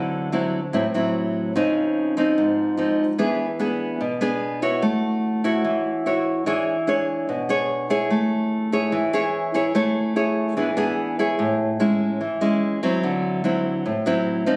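Romantic and relaxed, this short bossa nova passage, cut from a longer piece, features a nylon-string guitar playing alone for its full 14.6 seconds. The fingerpicked, classical-style guitar sits up front with a warm acoustic tone, ranging from G#2 up to C#5. Its harmony moves through lush extended chords, opening on D9 and passing through C#maj9, E7, A6 and Amaj7 before returning to D9 near the close. The phrase begins again at 11.4 seconds, so the brief piece feels like a gentle loop of a single idea. The sound carries a moderate large-studio reverb, and it was recorded on a phone in the room.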